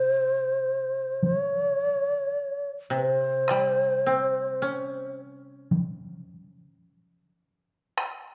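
Japanese traditional chamber music, calm and austere, unfolds in a rubato feel within a brief passage cut from a longer piece, tuned slightly high to A4 = 445 Hz. An end-blown bamboo shakuhachi carries the melody up front, its airy, mellow tone shaped by vibrato and tongued notes before it falls silent at 5.1 seconds. Beneath it, the koto supplies accompaniment, plucked with fingerpicks, its dry, woody sound sitting lower in the mix until it stops at 6.9 seconds. A taiko ensemble struck with heavy sticks enters at 1.2 seconds, also up front, with the close feel of a small room. Light reverb gives the whole performance a gentle sense of space.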